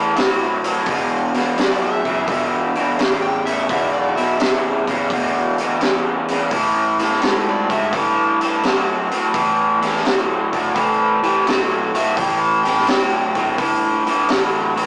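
A double-tracked, bright overdriven guitar riff with spring reverb opens this heavy, brooding blues-rock and southern-rock power-trio excerpt over growly fuzz bass sitting in the background, joined at 0.2 seconds by a gritty, up-front vintage drum kit with a high-tuned snare and tight kick, and at 1.6 seconds by an overdriven slide guitar melody set further back, all moving through Am, Em7 and Am7 with a swung feel and a rough rehearsal-room sound through a small speaker.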